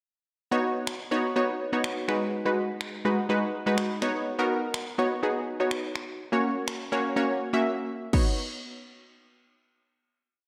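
A lush, dreamy hall reverb soaks this short, euphoric dance-pop piece in B major, giving it a glowing digital ambience. At 124 BPM in a straight 4/4, an analog pluck carries the accompaniment up front with syncopated chord stabs in a drop2 voicing. Its round, detuned sawtooth tone has a fast attack, a noise layer, a filter sweep, chorus and sidechain pumping. A punchy, tape-warm house drum kit joins at 0.9 seconds with a four-on-the-floor beat of kick drum, finger snaps and crash cymbal. The drums drop out at 7.2 seconds, and the harmony moves through Badd9, G#m7 and F#/A# before coming to rest on a final Badd9 chord at 8.1 seconds.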